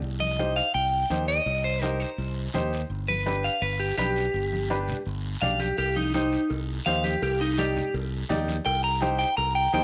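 A growly, punchy fingered electric bass opens this passionate, driving cumbia excerpt alongside ringing congas in the background and a raspy, close guiro, while a twangy, slightly broken-up electric guitar with slapback echo takes the lead up front almost at once. A brilliant, woody upright piano with short sustain supplies the accompaniment over a minor-key harmony in a moderate spring reverb and small room ambience. Very quiet metal-shell cowbell and timbales join at 5.8 seconds.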